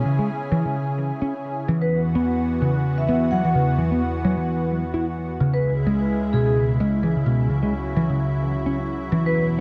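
Gritty and funky, this breakbeat excerpt swings its sixteenths at 129 BPM in C# minor pentatonic, moving from C#m to Esus2 and back. A growly, punchy picked electric bass drives the riff up front with tube saturation, a low-pass filter and analog delay, beneath a thick, detuned unison pad of sawtooth and square-wave tones that sustains bright, slow-attack chords through chorus. From 1.8 s a metallic, airy vibraphone played with medium mallets and its motor off carries the melody through an AM-radio filter and analog delay, all set in a moderate spring reverb that makes the mix echo-heavy.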